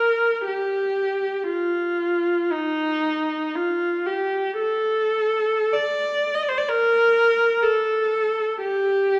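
Classical and mournful, this short excerpt from a longer piece features a single bowed viola, rich and up front with a soft attack, expressive vibrato and yearning portamento, playing alone in G minor in a free, rubato 3/4 at 49-65 BPM, set in a dark production with a reverberant recital hall tail of 1.7 seconds.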